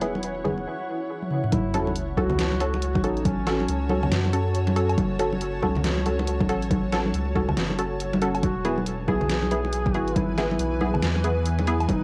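Deep dubstep at 139 BPM in F# minor with a half-time, swung feel, dark and meditative. It opens on a cloudy granular pad, muted dub chord stabs with chorus and dub echo, a round sub bass, an overdriven drum kit with toms and woodblock, and bright congas, until the drop at 1.5 s brings in a deep layered kick, a background sub drop, and a mellow duduk with vibrato and scooped notes, all carrying a cassette-tape home-recording character in a light digital ambience.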